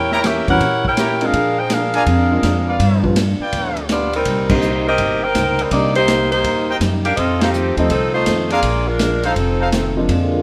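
A brassy, joyful big band swing excerpt with light reverb at 164 BPM in Bb mixolydian, where an up-front saxophone section with light vibrato carries the melody over a woody, growly pizzicato upright bass, a muffled lo-fi vintage drum kit, a natural baby grand piano and a picked steel-string acoustic guitar with finger squeak in the background, while a soft-attack trumpet section adds tight stabs, the band hits accents at 4.4 and 7.4 seconds, and a trombone section enters with sustained chords at 10.1 seconds.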